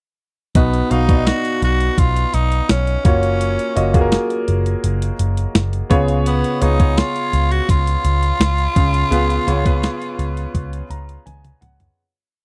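From 0.6 s, a thumpy 12-bit drum machine with a big backbeat, a dark, foam-muted picked electric bass driving eighth notes, and a clear grand piano pushing drop2 chords with audible action noise support a raspy, vibrato-laden tenor saxophone melody with slapback echo, all in a nostalgic, romantic 1980s-style pop verse at 84 BPM over B, F#maj7 and C#7, recorded dry and close, before a fade-out from 9.1 s that closes on piano and drum fills.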